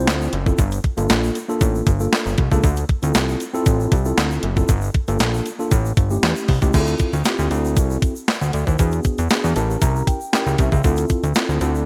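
Late-night and slick, this early-eighties boogie funk cut in D minor moves at 117 BPM in a straight 4/4, with a fat, detuned sawtooth analog bass pushed up front under an overdriven 12-bit drum machine of thumpy kick, snare, handclaps, hi-hat and crash, while a mellow tine electric piano lays down ninth and seventh chords, adds a fill at 9.3 seconds, and a grainy egg shaker ticks away in the background, all under light reverb and bright digital sheen.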